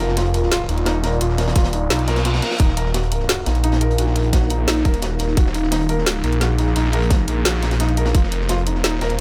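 A swirling, thick, phased and detuned saw bass sits up front in this mechanical, futuristic excerpt of dark technical drum and bass at 173 BPM, moving between F5 and Ebm over a tight electronic kick that enters at 1.6 s and stops at 8.2 s, a drum and bass kit with a woody snare and bright hats, a gritty, saturated breakbeat kit in the background, a moody, full-bodied analog pad with chorus and sidechain pumping, soft felt-muted upright piano arpeggios with dub echo, and a brief electronic reverse cymbal at 2.0 s, all in light reverb.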